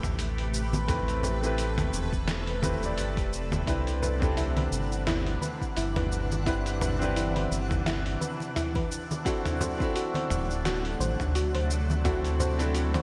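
A relaxed, blissful sunset chillout fragment at 86 BPM with a soft 16th-note swing opens on a bright concert grand piano accompaniment, a background ambient pad shimmering with chorus and phaser, an up-front round analog bass, a gritty tape-toned sampler-style kit of hi-hat, shaker, snare and toms under gated reverb, and a deep layered electronic kick, with ringing, dry congas joining at 0.7 s, a soft dark pluck arpeggio arriving at 3.7 s, and a twinkling granular sparkle entering at 4.3 s, all moving through Am9, Cmaj9 and D7 in a lush hall within a 1980s-style digital production.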